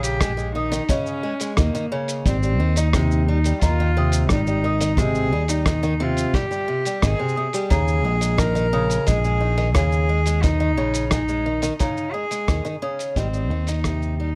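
A rich, reedy cello carries the melody up front, its bowed gut-string tone in a period style giving this pastoral folktronica piece an unhurried character at 88 BPM in Eb mixolydian. Beneath it, a picked twelve-string acoustic guitar plays shimmering, octave-doubled arpeggios with audible finger squeak, while a fingered electric bass sits close with a direct, amped tone. A marimba with soft mallets adds a woody, mellow second line in the background, its rosewood bars carried on tape echo, and it drops out at 13.4 s. The drums pair a muffled, pitched-down, sampler-style kit of cabasa, hi-hat and rim click with a punchy acoustic kick, played with brushes, that pumps in a small room. The harmony moves between Eb7sus4 and Abmaj7 in a straight 4/4, the dry sound keeps the parts intimate, and the passage, cut from a longer piece, fades out from 11.3 s to 14.3 s.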